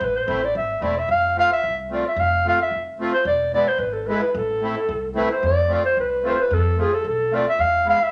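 This klezmer excerpt, cut from a longer piece, moves at 111 BPM in a straight 2/4 with a festive yet bittersweet mood. A breathy clarinet carries the melody up front from 0.0 s. It is close-miked and intimate, with a dark, whispered subtone, soft attacks, scooped notes and vibrato in a jazz-style solo voice. Beneath it, a pizzicato upright bass with steel strings gives a woody, thumpy foundation. A reedy accordion with light tremolo tuning enters at 0.3 s, adding sweet, smooth accompaniment. The harmony cycles through Am, F and E, and the phrase begins again at 5.4 s, all set in a moderate large-studio reverb.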